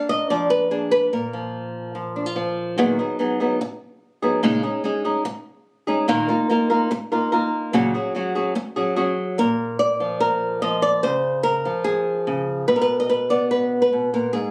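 This flamenco piece, cut from a longer work, is fiery and dramatic, moving at 145 BPM in a straight 4/4 with the tuning set to A4 = 437 Hz. A single fingerpicked flamenco guitar carries the whole solo from 0.0 to 14.5 seconds, sitting up front with a woody, acoustic tone and the character of old strings. It ranges from Ab2 up to Eb5, opening on a Bb chord before colouring the harmony over a Bb bass with shapes such as B6/Bb, Dbsus2/Bb and Gbsus2/Bb. After returning to Bb at 9.4 seconds, it turns to Db and closes on a tense Bmmaj7 at 12.7 seconds. The sound was captured on a phone in the room, with studio ambience, compression and a light reverb.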